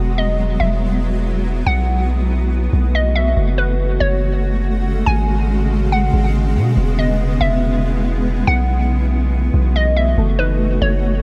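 At 141 BPM in 4/4 with a half-time feel, this melancholic, spacious hip hop fragment moves slowly in F# dorian, drifting through chords such as Emaj7, B7sus4, F#madd9 and G#m7 before settling on F#m69. A long, sustained 808-style bass sits up front from the start, its deep sine tone striking quickly and then decaying in a mellow way. Alongside it, a shimmering ambient pad holds chords with an ethereal, detuned, granular quality, an octave-up shimmer and a slow attack that lets it bloom and evolve, coloured by chorus and its own reverb. A hollow, bouncy square pluck carries the melody in a bright upper register from 0.2 seconds, shaped by ring modulation, a filter sweep, chorus and digital delay. At 10.2 seconds, soft, round electric-piano-like synth keys slip in behind with gentle arpeggios, softened by a low-pass filter and trailed by delay. The whole mix floats in light reverb and a digital ambience.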